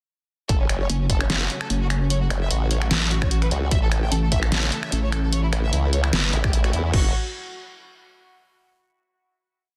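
A dense, heavily limited and dry mix carries this heavy, menacing wobble dubstep piece at 149 BPM in a swung half-time feel in F# phrygian, where a punchy layered kick and a dubstep kit with a deep, softly clipped snare, snaps, closed hats and crash drive beneath an up-front, saturated formant-sweep wobble bass with chorus and changing wobble speeds, a pulsing sine pluck wobble bass from 0.9 to 6.3 seconds answering it, huge detuned supersaw chords pumping in the background under a low-pass filter, and a rich, bowed studio violin section repeating a sixteenth-note riff over a pedal note with dub echo, before the drop gives way to a final F#m chord at 6.9 seconds.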